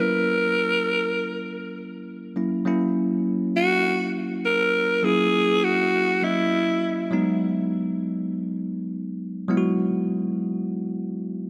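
A breathy alto saxophone and a bell-like tine electric piano open this romantic, uplifting pop excerpt together in a straight 4/4 feel. The saxophone carries the solo melody up front, its tone bright yet raspy and gritty, with vibrato and scooped notes in a pop style, trailed by a touch of delay. Beneath it, the electric piano supplies clean, direct accompaniment that chimes through the mix. The harmony rests on an F#7 chord before shifting to B6 at 7.1 seconds, the moment the saxophone falls silent and the piano carries on alone until 11.5 seconds. A moderate, lush hall reverb surrounds the pair, lending the short fragment, cut from a longer piece, a spacious glow.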